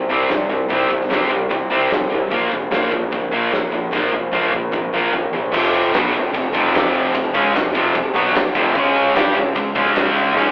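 A sludgy, overdriven electric guitar sits up front with a heavy riff in this driving hard rock excerpt at 149 BPM, backed by a brighter, tight distorted guitar and a growly fuzz fingered bass in the background, while a big, dark-toned acoustic drum kit with a fat snare and punchy kick rolls through a fill from 3.9 to 5.5 seconds as the music settles into F minor, all heard through a rough rehearsal-room recording with a telephone-like sound and wet studio reverb.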